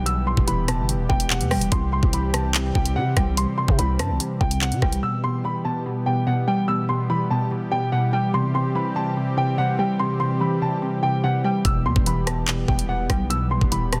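A worn, boxy baby grand piano carries the high melody up front, its action noise audible, over a glassy, detuned wavetable pluck and a smooth sawtooth pad, both treated with chorus, in this ominous half-time drill excerpt. An overdriven electronic kit with a knocking kick, bright hi-hats, handclaps and rim clicks drives the beat alongside a growling, buzzy 808-style bass. Both drop out at 5.0 seconds, leaving the piano, pluck and pad alone until the drums return at 11.6 seconds, all in a dry, dense, heavily limited mix.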